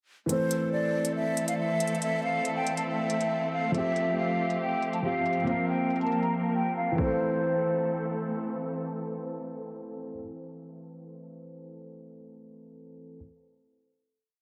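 A breathy flute loop with delay drifts over dark, held piano chords, veiled con sordino strings and a drill kit of hard-clipped kicks and skipping hi-hat rolls in this ominous, half-time drill hip hop piece at 139 BPM in A phrygian, all soaked in huge reverb behind a low-pass filter, until the drums fall silent at 6.3 s and a final hit lands at 7.2 s, with the piano sustaining until 13.2 s.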